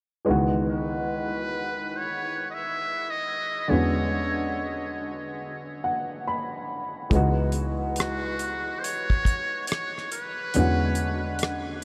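A slow, swung sixteenth-note groove in four underpins this introspective, sultry neo-soul R&B passage, cut from a longer piece and soaked in a huge, dreamy reverb. A woody, slightly detuned upright piano sits up front with short-sustained accompaniment, moving between C#m11 and E13 and playing a fill from 5.4 seconds. Beneath it, a single bowed double bass sounds bright and intense with vibrato, set distant in the mix. A buzzy, thin trumpet with a metal mute carries the jazz-style solo melody up front, its light vibrato and smooth top trailed by delay. At 7.1 seconds a dry, damped 70s drum kit enters with hi-hat, rim click and a tight kick.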